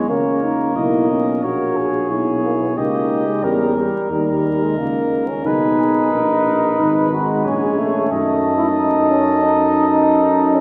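In a straight, even 4/4 pulse, this brass quintet passage unfolds with a heroic yet grave character, cut from a longer classical piece. A vintage-toned trumpet carries the melody, while a distant, roomy flugelhorn sings a second line just beneath it. The French horn sits in the background with a present, warm color, and a clear trombone adds accompaniment from further back in the hall, both trombones carrying a light vibrato. The bass trombone stands up front, anchoring the low end as the harmony moves from A#dim through D#7/C# and G#m to D#dim/F#. A long, wet church reverb surrounds the ensemble, and vinyl crackle gives the recording an aged patina.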